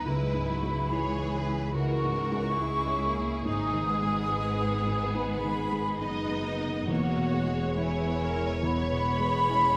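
The excerpt opens with the full orchestra sounding together: a violin section carries the bittersweet, sorrowful melody while a flute section floats a second line above it with an airy, expressive vibrato and soft attack. This is a cinematic, emotional film score in C# dorian at a rubato 70 BPM in 4/4, moving through C#m7, G#m and E. A second violin section sings beneath the melody with a smooth top, while the violas, bowed and close, fill in the accompaniment in the background. A felt-muted upright piano adds a mellow, intimate cushion of accompaniment, and a concert harp rings out fingerpicked arpeggios behind the strings. Cellos, intense in tone, and lush double basses anchor the low end together, and the whole ensemble sits in a wet concert hall reverb that lets the sound bloom for the 9.8 seconds heard.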